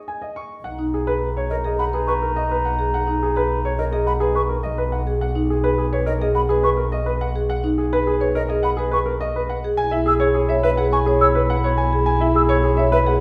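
A straight 4/4 pulse at 105 BPM drives this minimalist classical pattern music in B major, tuned slightly low to A4 = 438 Hz, and its repeating figures feel hypnotic and urgent. A smooth, vintage-toned grand piano carries the melody up front from the opening, while a bowed double bass sits close beneath it, holding a low B with an even tone and gentle vibrato. Marimba played with soft mallets on rosewood bars adds woody, round arpeggios, and a hollow, airy silver flute joins at 1.5 s with tongued arpeggios higher up. A distant, mellow clarinet plays a second line, dropping out after 5.0 s and returning at 9.8 s as the harmony shifts from B to E over B. A wet recital hall reverb surrounds the ensemble in this passage, which is cut from a longer piece.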